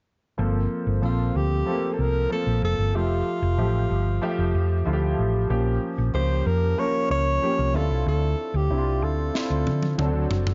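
At a straight 94 BPM in 4/4, this glossy, urban slice of polished 1980s jazz-funk pop sets a round, hollow-body fingered electric bass under a lush, chorused grand piano moving through Gm11, Fmaj9, Bbm6 and Dm9, while a breathy, close-miked alto saxophone solos up front with scooped notes and delay, and a tight, dry funk kit with a high-tuned snare arrives at 9.4 s for a fill on snare and toms, all set in a dark production with light reverb.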